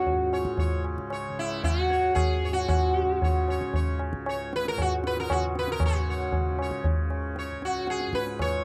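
Hindustani classical music in 3/4 at 115 BPM, longing and meditative, which speeds up across this brief 8.6-second fragment of a longer piece. A bright, buzzing sitar carries the melody up front, its sympathetic strings shimmering, over a softly plucked, warm tanpura drone, while low-tuned tabla with a short ring enters at 0.1 seconds, close and dry. The intimate 1970s-style studio sound carries only light reverb, and a new section begins at 5.8 seconds.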